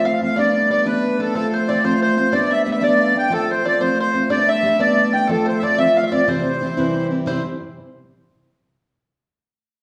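A lively, cheerful Celtic jig opens at once with all four instruments together, cut from a longer piece and lasting just over 7 seconds. The reedy accordion carries the melody up front, its slow beating giving the tune an airy shimmer. Behind it, a mellow wooden flute with vibrato and a soft attack sits distant in the background, and a twangy, plunky open-back banjo, fingerpicked and percussive, adds a second line in the same register. A full-bodied jumbo steel-string guitar is picked up front as accompaniment, with an audible finger squeak. In C major at 122 dotted-quarter beats per minute in 6/8, the harmony alternates between Gadd9 and F before settling on C at 6.3 seconds. The whole group rings in the generous reverb of a recital hall, lending the dance a spacious, church-like glow.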